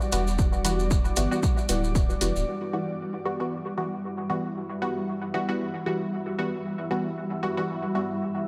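Dub techno at 115 BPM in E minor with a meditative, nocturnal mood, this short cut opens on an Emadd9 chord as a bright, cloudy granular pad and muted, detuned chord stabs soaked in chorus, phaser, tape and dub echo pump against a punchy, up-front analog kick, a tape-warm hi-hat, grainy maracas and a round, soft sub bass, all of which drop out by 2.5 s, leaving the pad and stabs to float in a lush hall reverb while an airy, wind-like noise texture drifts in at 4.0 s.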